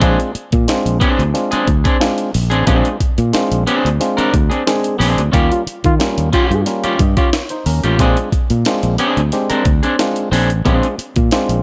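This gritty, playful funk fragment sits in a digital ambience, moving at 90 BPM in a straight 4/4 over Bb mixolydian. Up front, a breakbeat sampler-style drum kit sounds compressed, pitched up and overdriven, with a thumpy kick, a high-tuned snare and hi-hat. Beside it, an overdriven fingered electric bass comes through dark, round and punchy, while an electric guitar at the edge of break-up adds bright, twangy accompaniment, and a mellow, stringy clav played through a combo amp supplies percussive stabs. The harmony moves from Bb9 to Eb9 at 5.3 seconds and back to Bb9 at 8.0 seconds, a span the whole band marks with an accent. Inside that accent, a forceful, smooth-topped trombone adds a brief jazz-style second line on a single F4, coloured by light vibrato.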